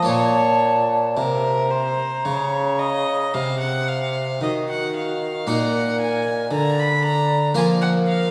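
A wet concert-hall reverb with a 2.0-second decay surrounds this short cut from a baroque-style sonata movement with continuo, recorded in a church or concert hall and played at a grave, solemn 56 BPM in straight 4/4. The baroque flute carries the melody from Gb4 up to Bb5 with a pure, wooden tone, vibrato, a crisp attack and rolled-off highs. Close and up front, a single violin plays the second line between Bb4 and Cb6, its gut-string sound nasal and reedy with an airy bow. The harpsichord accompanies in a round, plucked Flemish voice on one set of strings, while the bassoon holds the bass between Bb2 and F3, distant and roomy with light vibrato. All four parts play throughout, opening on Bb minor before the music moves to Eb minor at 4.4 seconds and touches Bb over D at 6.5 seconds.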